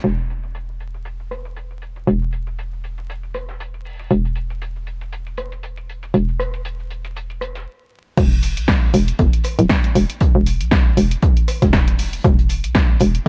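A hollow, bouncy FM bass knocks up front through this late-night, hypnotic deep house excerpt at 118 BPM, set over a swung 16th-note groove. A punchy analog drum machine supplies cabasa, crash, hi-hat, rim click and snare through low-pass filtering, while a dark, dry soul kit sits quietly beneath with a pumping, rolled-off hi-hat and a medium-tuned snare. After a brief stop from 7.7 to 8.2 seconds, the drop arrives with a forceful electronic kick re-recorded in a small room, all under a coat of vinyl crackle and very little reverb.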